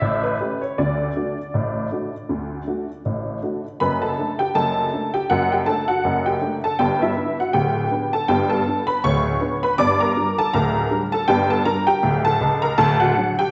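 A detuned, jangly honky-tonk upright piano plays alone and sits up front through this lively, jaunty ragtime excerpt in a swung 2/4, its woody, vintage tone spanning from the deep bass to the high treble. After a brief opening, a new section arrives at 3.8 seconds, moving through D over F sharp, G and G minor before settling back on D. A wet hall reverb with a long tail surrounds the piano, and the recording's top end is dull and capped.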